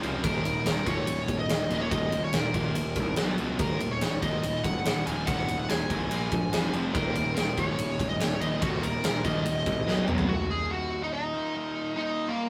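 A huge, punchy arena drum kit and a growly fuzz bass drive three overdriven rhythm guitars (a biting one, a double-tracked semi-hollow one and a sludgy one in the background) through a heavy Eb minor hard rock riff at 143 BPM, while a smooth, up-front lead guitar carries the melody from 0.2 s, and after a drum fill the rhythm section drops out at 10.3 s, leaving the lead and the biting guitar to carry on in a rough rehearsal-room sound.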